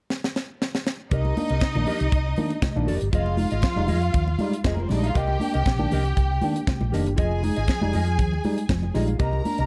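A dark, lightly reverberant small-room production frames this glamorous, danceable disco excerpt, where an up-front, dry funk drum kit with a high-tuned snare and tight kick opens with a fill before, at 1.1 s, a round, up-front hollow-body fingered bass enters beneath a lush, bowed violin section with expressive vibrato, a clean, mellow electric guitar through a phaser, and a worn, slightly out-of-tune tine electric piano, with very quiet, soft-handed congas joining at 1.2 s as the harmony moves between Cm7 and Fm7.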